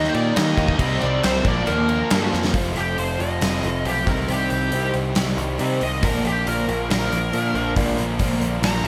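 Classic rock at 138 BPM with a swaggering, brooding mood, where a gated kit with a punchy kick and bright cymbals drives a growling overdriven bass, crunchy and raw garage rhythm guitars, a double-tracked cranked stack guitar that drops out at 2.5 seconds, and a shimmering, octave-doubled twelve-string acoustic in the background, as a dark lead guitar with wah and slapback echo takes a solo after a drum fill at 2.3 seconds, when the groove moves to half time over chords of Eb, Cm, Bb and F in light reverb.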